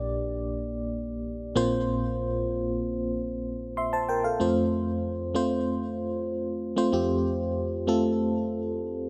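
A solo FM electric piano opens this short pop passage, cut from a longer piece, with a glassy, bell-like tone that sits up front in the mix. Each note has a fast attack and then decays, with a noise layer under the strike, while chorus, tremolo and digital delay add a glossy shimmer to the sound. The part covers a broad range, from Bb1 up to C6, in a steady, straight 4/4 feel. The harmony moves from Gm/Bb to Bbsus2 at 1.6 seconds, then settles on F as a new section begins at 4.4 seconds. A moderate plate reverb with a 2.9-second tail surrounds the piano, giving the brief passage an uplifting mood.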